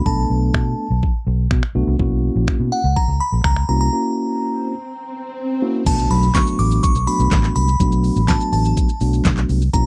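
Bittersweet and driving, this dance-pop excerpt moves at 124 BPM in a straight 4/4, set in B minor with harmony shifting from Bm7 to F#7 and back to Bm7 at 5.9 seconds. A glassy, crystalline FM synth bell carries the melody high above, its fast-attack, decaying tones brightened by chorus and a slapback echo. Beneath it, a mellow tine electric piano heard through its built-in speakers supplies clean accompaniment, while a dark, foam-muted fingered electric bass sits up front with a round, punchy tone and sidechain pumping. The layered, produced pop drum kit pairs a knocking kick and fat snare with crisp hi-hats, shaker, handclaps, finger snaps and crash cymbal, re-recorded in a small room and placed up front. A break arrives at 3.9 seconds, an electronic swell builds from 4.6 seconds and lands as an impact at 5.9 seconds to open the second section, all within a dry, close studio sound in a 1970s style with little reverb.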